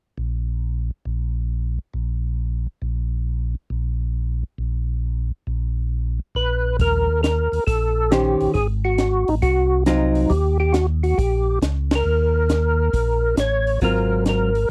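A percussive tonewheel organ with a fat, third-harmonic bite, key click and chorus vibrato carries the melody from 6.4 seconds, riding a mellow, round organ bass line that opens the piece alone over a slow rotary speaker. This greasy, bluesy soul jazz organ trio excerpt swings in 4/4, with a compact cocktail drum kit, dark and smooth with a high-tuned snare, entering at 6.8 seconds, and a clean, picked hollow-body jazz guitar comping in brief spots from 8.1 seconds. The band hits an accent at 11.8 seconds, all captured in a dry, close 1970s-style studio sound with light reverb.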